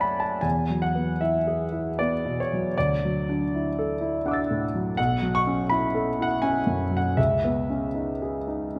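Impressionist classical solo piano, this brief excerpt drifts in a serene, hazy mood, cut from a longer piece and moving in an unhurried triple metre with free, rubato timing that lets the beats stretch unevenly. A single concert grand carries everything from 0.0 to 8.8 seconds, spanning from deep bass notes up to a high top register. The instrument sounds warm, intimate and natural, placed up front, with its mechanical action noise audible beneath the notes. Added-ninth chords on E and D give way to a suspended B ninth and settle on a C-sharp minor ninth, their colours blurring together. A long, wet concert hall reverb surrounds the piano, letting each chord hang in the air and deepening the dreamy haze.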